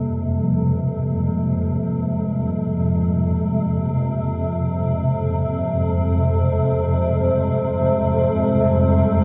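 Dark ambient drone in free time and F minor, this unsettling, ominous excerpt opens on an Fmadd9 chord with a swarming, nasal, detuned drone up front, granular and tense as it evolves beneath a deep, moody pad of sustained chords. The pad's sawtooth and sine layers, with a sub octave and a moving notch, are thickened by chorus and shimmer reverb, while a metallic bronze singing bowl rings out meditative arpeggios in the background through diffuse delay before stopping at 6.1 seconds. A huge, wet reverb with an 8.6-second decay gives the dark production its cavernous depth.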